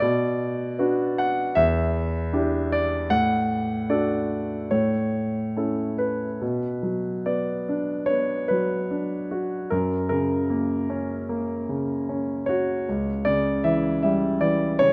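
Melancholic and wistful, this lyrical classical solo for concert grand piano moves at 76 BPM in 4/4 with a rubato feel, its chords passing from Bm through Em7, D/A and A before the music settles into B minor at 6.4 seconds. The piano is warm and natural, with a deep bass, and sits up front, spanning C#2 to F#5. Close, detailed microphones and light reverb frame this short cut from a longer piece, which moves to F# and closes on C#dim at 12.9 seconds.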